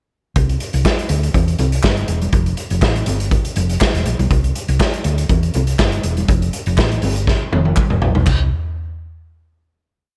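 Disco at 121 BPM in C major, glamorous and danceable, built on an up-front vintage drum kit with a punchy kick, dark cymbals and gated reverb playing a four-on-the-floor beat with sixteenth-note hats, a round, hollow-body fingered electric bass running a syncopated line with chromatic approach notes, very quiet ringing congas with a slap on two and open tones on four, and crisp group handclaps joining on the backbeat at 0.9 seconds, before a drum fill at 7.3 seconds leads into a final chord at 8.3 seconds.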